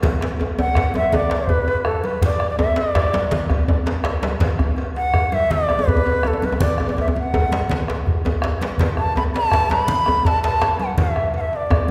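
A bright bamboo bansuri stands out, entering at 0.6 seconds with a pure, expressive tone, gentle vibrato and soft attack, placed up front and ranging from A4 to B5. Beneath it, a West African drum ensemble drives a powerful, straight 12/8 groove from the very start, featuring a warm, deep, up-front djembe played with soft hands. A second djembe sits very quiet and band-limited, its tight, cracking, vintage timbre adding texture, while damped, medium-tuned congas with a thin skin sound in a small room. A round bombo sits in the background, and a metallic cowbell rings distant in a large space. The whole ensemble is heard from further back in a concert hall with a lush, reverberant tail, and this short cut from a longer piece stays in one driving section throughout its 11.9 seconds.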